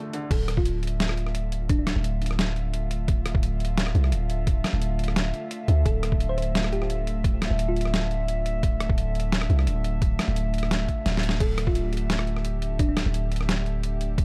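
A dry, gritty recording opens this dark, cinematic excerpt of half-time drum and bass at 173 BPM in D minor, where a nasal, gut-string cello section holds bowed chords under sidechain pumping from the start, and the drop lands at 0.3 s on D minor. A thumpy, pitched-down electronic kick and a sampler-style boom bap kit with crash, hi-hat, rim click and a medium-tuned snare sit up front in a small room, alongside a deep, mellow 808-style sine bass that sustains from D1 to D2. A round, tine-like FM pluck with chorus, cassette tape colour and tape echo plays brief melodic phrases, returning after a drum fill at 11.1 s.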